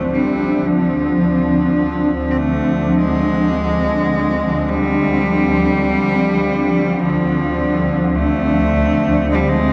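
A swarming, tense, detuned drone fades in beneath a blurred granular cloud pad holding a single minor chord up front, opening this dark, cavernous ambient fragment cut from a longer piece. A clear, earthy cello, bowed close by one player with light vibrato and an airy bow, carries a melody through tape echo. A huge, wet reverb and worn cassette warble with drifting pitch give the whole passage a vintage haze.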